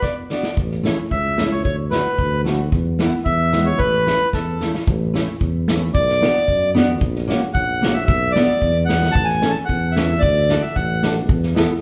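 A reedy, mid-forward accordion sits up front and carries the melody in this bouncy, festive alpine folk piece for a dance band, cut from a longer performance in A major at 112 BPM in a straight 2/4. An unplugged drum kit played with bundle sticks drives the beat with hi-hat, a punchy kick and a medium-tuned snare, opening with a fill and adding another at 4.3 seconds as the phrase repeats. A picked steel-string jumbo guitar, full-bodied and warm, fills out the accompaniment, while a mellow, close-miked tuba in a classical style holds down the bass from 0.6 seconds. The harmony moves through Bm, A, D and Esus4 resolving to E, with an F#/A# passing chord in the second phrase. The band plays live together in one room, wrapped in a wet large-studio reverb.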